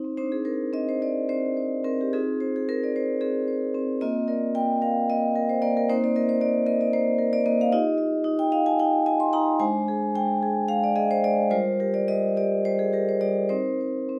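A contemporary classical piece for solo vibraphone, this short extract from a longer work unfolds in a reflective, flowing mood in C minor. The tempo sits around 206-231 eighth-note beats per minute in 7/8, though the rubato feel lets the pulse breathe and stretch. The vibraphone, played with medium mallets and the motor off, sounds metallic and ringing, spanning G3 to C6 and sitting up front in the sound. Its harmony moves through Cmadd9, Fm7/C, Bbsus2, Cm/Bb, Ebadd9, Abmaj7#11 and Gm7 before settling on Cm7 at 13.5 seconds. Close, detailed microphones capture the instrument with light reverb, and the recording runs from the start to 14.2 seconds.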